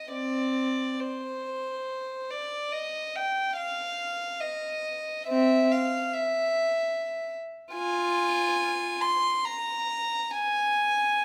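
In free, unmeasured time, this meditative and mournful classical excerpt features a single unaccompanied violin, bowed sul tasto with a soft attack, its pure, floating tone set in the moderate reverb of a recital hall.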